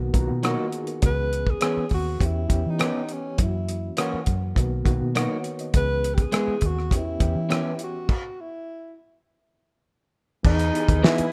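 Romantic and lush, this 1970s-style soul excerpt moves at 102 BPM in a straight 4/4, with a breathy tenor saxophone carrying a mellow, scooped melody over a gritty, overdriven reed electric piano with fast tremolo, a round, foam-muted fingered bass and a cloth-damped drum kit with a fat snare and dark cymbals. An electric guitar through a small old amp plays a slightly broken-up, picked riff bathed in spring reverb, while the electric piano opens with a fill and the band hits a stop from 8.1 to 10.4 seconds. A very quiet, shimmering string machine enters at 10.4 seconds on an Emaj7, all in a rough home demo mix with light studio reverb.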